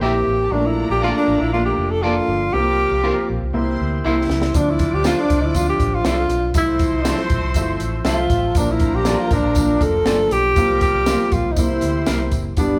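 Uptempo 1960s-style soul at 120 BPM, warm and danceable, in which a breathy, whispered tenor saxophone carries the intimate, up-front melody over a clear, slightly detuned upright piano, a round foam-muted electric bass, a twangy guitar stabbing at the edge of break-up, a mellow tonewheel organ with key click and slow rotary, and a tight vintage horn section and lush bowed violins in the background, all in a wet room reverb, until a drum fill at 4.0 seconds brings in the punchy, high-tuned cocktail kit and a jingly tambourine over chords moving through C7, Dm7 and Fmaj7.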